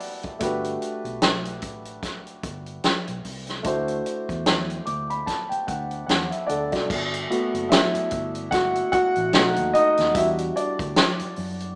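A 74 BPM groove in 4/4 with a swung sixteenth feel drives this smooth, lush fragment of 1970s-style soul in G major: a vintage drum kit with a fat snare, tight kick, hi-hat and crash sits up front beside a natural grand piano that plays fills before taking a solo from 6.9 s, while a dark, round, foam-muted fingered electric bass enters at 0.4 s low in the mix beneath chords moving through Gmaj7, D7, B7 and Em7, heard in a moderately reverberant large studio with a small-speaker character.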